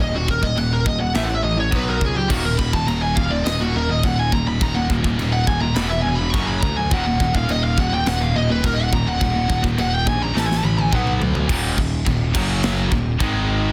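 A dense, heavily limited mix with light reverb carries this dark, epic heavy metal passage in Eb minor at 104 BPM, cut from a longer piece and built on power chords over an Eb minor foundation. An up-front, high-gain lead guitar with distortion and delay sings a solo melody until 11.1 seconds, while a quiet overdriven guitar and a background high-gain distorted guitar pick the riff, joined at 2.3 seconds by a scooped, double-tracked high-gain guitar. Beneath them, a growly, direct picked bass sits forward, and a tight, polished metal kit in an airy big room, with bright cymbals, china and toms, plays a drum fill into the new section at 11.5 seconds.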